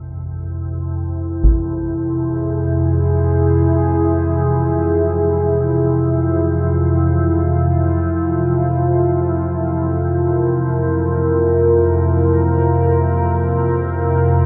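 A detuned, organ-like drone opens this dark, cavernous ambient excerpt, sustained low with ensemble chorus and a phaser coloring its calm tone. At 0.8 seconds a deep, warbling pad with a vintage sawtooth edge and a sub octave joins above it, holding moody sustained chords on a single minor harmony, while a brief taiko ensemble passage, played with heavy sticks in a small room, enters at 1.4 seconds through a low-pass filter. A huge, wet reverb with a 7.6-second tail surrounds the free-floating drone, giving the production a shadowy, enveloping feel.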